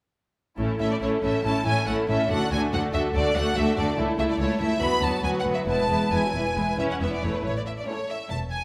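A wet recital-hall reverb surrounds this lively, cheerful string orchestra excerpt, a quick classical-period movement in A major with a rubato feel at about 134-145 BPM. A close, focused studio violin section carries the melody up front from 0.8 s, above a soft-attacked, expressive symphonic violin section on the second line and a lush viola section in accompaniment, both entering at 0.6 s. Cellos sit in the background with an even, smooth double bass section on the bass line as the harmony moves from A through D and E back to A, every section bowed with vibrato.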